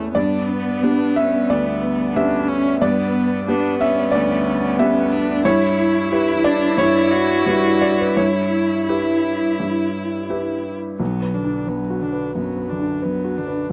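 Melancholic and longing, this short excerpt of neoclassical piano and strings drifts in B minor at a flexible, rubato pace of roughly 84-93 BPM in 4/4. A felt-muted upright piano sits up front as accompaniment, its soft, mellow tone intimate and close, with the thin felt and audible action noise giving it a hushed, homely character. A single bowed viola joins from the start, its smooth, even tone carrying vibrato, while a solo cello enters at 0.2 s as a second line, equally rich and close. The harmony moves from G to Em/G before settling on Bm at 11.0 s, where a new section begins and runs until 13.7 s. The sound is dry and close, like a 1970s studio recording, with only a light touch of reverb.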